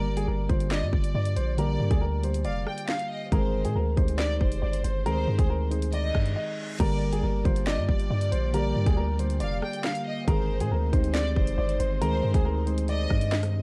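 Dry and dark in production, this cold, ominous drill cut sits in G phrygian at 138 BPM with a half-time feel, moving between Gm and Ab. An electronic drill kit sits up front with a hard-clipped kick, sharp snare, hi-hat, handclaps, rim clicks and crash, while a deep, sine-like 808-style bass holds long, mellow decaying notes beneath it. A dark baby grand piano carries the melody through a low-pass filter and digital delay, its long sustain joined by a lush, bowed violin section with vibrato and a smooth top as a second line. Muted, felt-like synth keys with chorus fill in soft, intimate accompaniment in the middle register. A brief electronic reverse cymbal rises from 6.1 seconds into a short break before the second section begins at 6.8 seconds, and from 7.6 seconds a very quiet, airy, breathy pad with chorus and phaser adds slow-attack sustained chords to the close of this excerpt.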